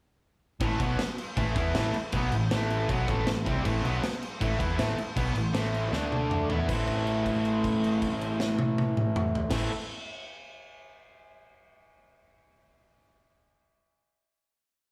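A straight, driving 4/4 at 158 BPM carries this short, aggressive hard rock piece in A minor, with a big rock drum kit up front, punchy in the kick, pushing a power-chord riff from 0.6 seconds. A cranked stack guitar with overdrive and slapback echo and an overdriven semi-hollow guitar, both bright and double-tracked, play the riff. Beneath them a dark, round hollow-body short-scale bass doubles it in driving eighth notes, until a drum fill over D5 and E5 leads into a held A minor final chord at 6.7 seconds, all set in a lush hall reverb with a big arena sound.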